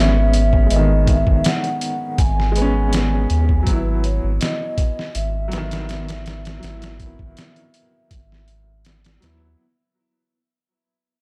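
A straight, unhurried 4/4 groove from a sampler-style trip hop kit sets the pace, its compressed, pitched-down hi-hat, thumpy kick and medium-tuned snare sitting up front with a gritty, tape-warm character and a touch of studio reverb. Beneath it, a round analog bass holds the low end with deep, sustained notes and a fast attack, dark and close in the mix. An upright piano supplies warm, woody accompaniment through tremolo and tape echo, moving from G#m to Bsus4/G# at 3.7 seconds. Above it all, a vibraphone played with soft mallets carries a mellow, ringing melody with a medium motor vibrato and dub echo, its vintage, band-limited tone dropping out of the picture at 8.8 seconds. The mood is dark and smoky, wrapped in small-room ambience and a warm production, and the whole fragment fades out across its length as if cut from a longer piece.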